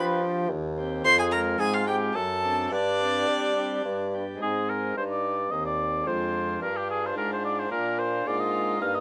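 A moderate studio reverb places this short cut from a longer baroque-style sonata movement in a studio space, giving the ensemble a grave, introspective cast at 109 BPM in a straight 3/4. A warm oboe, played with light vibrato and a soft attack, carries the melody up front from D4 to F5, while a rich, smooth violin with vibrato weaves a second line between C4 and C6. A clear bassoon sits equally present beneath them as the bass, with light vibrato and a gentle onset, and a pipe organ principal chorus fills in the continuo accompaniment more softly, its full baroque voicing touched with chiff. The harmony moves through Cm/Eb, Fm and D7/F# to a suspended G that resolves onto G. A second section opens at 4.4 s on Ab, passes through Dm7b5/F and settles on Bb by 7.7 s, with all four parts sounding together throughout.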